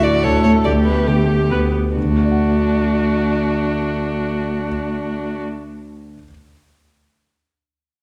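A lively, cheerful excerpt from a quick classical-period movement for piano quartet in D major and 3/4, moving at 131-150 BPM and slowing over its first 2.0 seconds. A rich, expressive violin melody with vibrato and portamento sings over a focused, close cello line, a clear, even viola, and a dark, mellow concert grand whose intimate, vintage tone carries audible action noise and deep bass, sitting up front and sounding on alone until 6.3 seconds after the strings stop at 5.4, all within a moderate scoring-stage reverb and a warm production.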